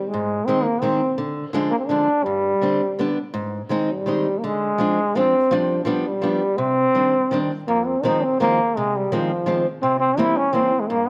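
A clear, vintage-toned trombone opens this excerpt with a jazz-style solo melody full of vibrato, joined at 0.1 s by a fingerpicked ladder-braced acoustic guitar whose dark, woody, boxy sound and old strings give the accompaniment an aged character. The piece is a nostalgic, bittersweet musette waltz in 3/4 at 167 BPM, set in C minor before shifting to F minor at 7.7 s. Both instruments sit up front in a close, detailed recording, surrounded by a moderate recital hall reverb.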